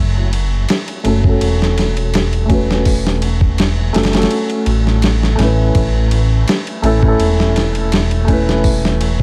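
An echo-heavy digital ambience flecked with vinyl crackle frames this dark, smoky trip hop excerpt in F# minor, moving at 83 BPM in 4/4 with a light swing on the sixteenths. A deep, rumbling detuned saw bass opens alone, joined at 0.3 seconds by an up-front, gritty sampler-style soul drum kit of thumpy kick, snare, hi-hat and ride. From 1.0 second a soft, felt-muted upright piano adds mellow, intimate accompaniment through tremolo, tape echo and a filter sweep, as the harmony shifts from F#m to A at 5.8 seconds.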